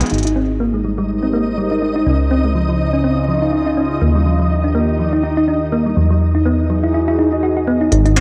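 A warbling, nostalgic tape-like pad, a round, tine-like thumb-piano synth pluck spinning arpeggios under a filter sweep, a rubbery, up-front acid bass and a brief burst of crisp electronic hi-hat and struck metal open this intricate, wistful IDM excerpt with a gentle swing, before a grainy, flickering texture drifts in at 0.8 seconds over shifting Abmaj9, Dbmaj9, Ebadd9 and Emaj9 chords, the drums returning at 7.9 seconds, all set in a dry, gritty cassette-tape sound with light digital ambience.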